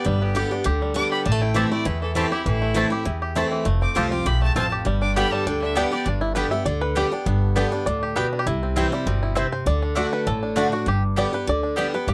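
A twangy, fingerpicked bluegrass banjo carries the melody through this lively, virtuosic bluegrass excerpt in G major at 200 BPM, taking over the solo at 6.1 seconds after a clear, earthy bowed fiddle with light vibrato leads the opening and then drops out, while a bright, full-bodied dreadnought guitar picks the accompaniment with audible finger squeak, a thumpy, dark pizzicato upright bass anchors the low end, and a woody mandolin adds double-string stabs from 1.6 seconds, set in a light reverb.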